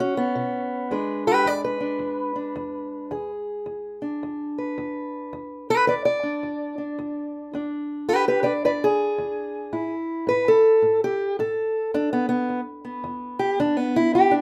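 A boxy, fresh-stringed parlour steel-string acoustic guitar, fingerpicked and up front, carries this soulful, swaggering acoustic country blues fragment alone at 109 BPM with a swung 4/4 feel in E mixolydian, moving from E7 at 0.9 seconds to A5 at 9.7 seconds and back toward E at 11.9 seconds, set in moderate studio reverb within a rough home-demo mix.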